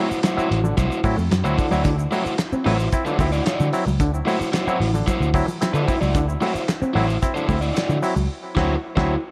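Funk at 112 BPM in D mixolydian, funky and energetic, cut from a longer piece and resting on a D9 chord in a small room. An up-front, round, foam-muted vintage picked bass anchors a cloth-damped, thuddy acoustic kit with a fat snare, tight kick, dark cymbals, hi-hat, crash and handclaps. An overdriven, compressed guitar with spring reverb accompanies up front alongside a stringy auto-wah clav with tape echo playing stabs, while a clean, fingered guitar riff stops at 8.2 s and a grainy egg shaker sits behind until 8.3 s, when the band hits an accent that closes at 9.3 s.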